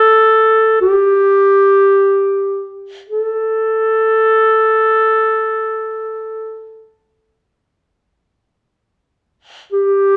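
A lone clarinet opens this brief fragment of Japanese traditional chamber music. It plays from the first moment to 10.2 seconds, with a warm, classical-style tone, and its line stays within G4 to A4. The music moves in free time, giving an austere, calm feel that never settles into a steady pulse. The clarinet sits up front, surrounded by a moderate recital-hall reverberation that lends the room a sense of depth. Tuned slightly below standard pitch, the passage is cut from a longer piece.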